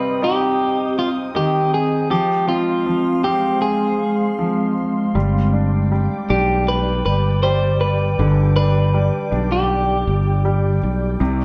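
Captured live in one room with a wet studio reverb, this short cut from a longer, heartbroken pop ballad aches with longing as a twangy, slightly broken-up electric guitar with spring reverb sings the melody up front over brilliant grand piano accompaniment and a glassy, ethereal FM pad with ensemble chorus holding sustained chords, until a growly fretless electric bass enters at 5.2 s as the harmony moves from Cm through Fm to G.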